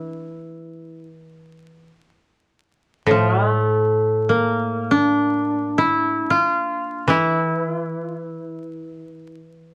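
Meditative and solitary, this brief excerpt of Japanese traditional chamber music in free time pairs two up-front, woody koto plucked with fingerpicks, one carrying the melody from A3 to F4 while the other accompanies lower from A2 to E3, heard in a small room's moderate reverb through worn, warbling old cassette tape with vinyl crackle and wavering pitch drift, until the melody stops at 9.4 seconds and the accompaniment closes at 9.7.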